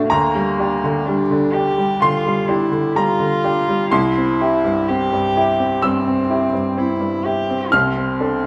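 A bright baby grand piano, up front with audible action noise and a short sustain, and a single bowed cello played sul tasto with a soft attack and a pure, floating tone begin together in this tender, intimate neoclassical fragment at a rubato 63 BPM in 4/4, the piano's accompaniment and the cello's second line moving through Gm/D, C and F6/C across 8.5 seconds, captured live in one room with a wet studio reverb.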